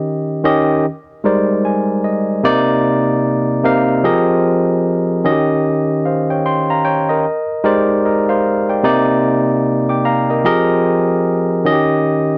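A barky, lightly overdriven tine electric piano plays alone through a combo amp, sitting up front in a dry, close 1970s-style studio sound as it moves through sultry, late-night R&B chords like Eb7, Abmaj9#11, Cm9 and Fm11 with a swung sixteenth-note feel, adding a brief fill at 1.2 seconds in this short cut from a longer piece.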